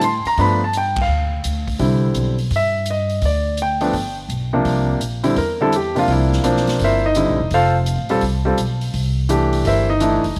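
Lightly reverberant studio ambience surrounds this sophisticated, swinging jazz piano trio excerpt in C mixolydian at 168 BPM, where an up-front grand piano carries the melody over woody pizzicato upright bass and a polished kit with dark cymbals and a punchy kick, the whole band hitting an accent at 0.9 seconds as the changes move through G7, C, G, C7 and F across two matching passages.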